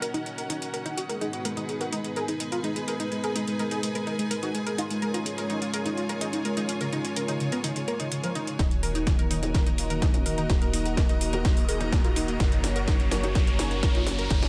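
A dark, detuned analog pad with chorus and a punchy unison pluck arpeggio treated with cassette tape and delay open this melancholic, driving melodic techno excerpt at 126 BPM in Eb minor, joined from the start by a techno kit of congas, metallic high-passed hats and a cracking snare, and a smooth symphonic string section; a thick, vibrato-laden unison lead with ensemble chorus and tape echo soon carries the melody over the pumping Gb, Abm and Db chords, before a tight sawtooth sequencer bass and an up-front layered kick arrive at 8.6 s for the build-up and drum fill on Ebm, with an electronic riser climbing in from 11.2 s under a light reverb.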